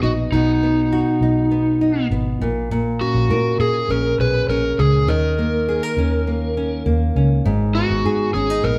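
A straight, unhurried 4/4 pulse carries this heartfelt, easy-going acoustic pop fragment, lifted from a longer piece, with a dark, round, foam-muted electric bass fingered beneath it. Up front, a bright, fingerpicked nylon-string guitar with a deep classical tone lays down the accompaniment while an overdriven slide guitar sings the melody over a B, A#m7, D#5 and G#m progression. The whole band plays live together in one room, bathed in the wet ring of a stone-room reverb.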